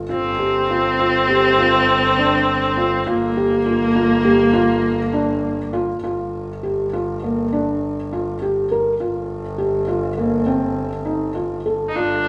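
Restless and pensive, this contemporary instrumental passage moves in a straight 5/8 at 203 BPM in eighths, in G minor, its felt-muted upright piano turning out dark, boxy arpeggios with audible action noise while a single bowed double bass holds a low G with an airy, sul tasto tone and light vibrato. A bowed viola sings the second line with expressive portamento and vibrato, dropping out at 5.7 seconds and returning at 11.9 seconds. The harmony rests on Gm7 before shifting to F5/G at 9.0 seconds, all set in a moderate recital hall reverb with a small room's intimacy.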